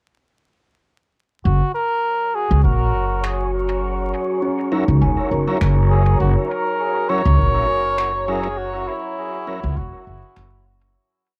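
A woody, thumpy upright bass carries a dub-style line up front from 1.5 s in a lightly swung groove, and a soft, slow electronic kick joins in the background, followed by sparse, echoing finger snaps. Over it, a cup-muted trumpet plays a veiled, classical-style solo melody built from short call phrases, coloured by 12-bit sampler grit and tape echo. A deep, moody ambient pad slowly shifts its dark, detuned chords beneath, and a breathy, wind-like noise texture holds a single high note in the background. From 4.4 s, a hollow kalimba adds three ringing loops of unequal length that drift against each other, and from 4.7 s a clean tonewheel organ drops in sparse echoing chord stabs with key click and chorus vibrato, moving one shape in parallel. The whole piece feels hazy and spacious, steeped in cassette tape and vinyl crackle from a home recording, and it fades out from 7.8 s.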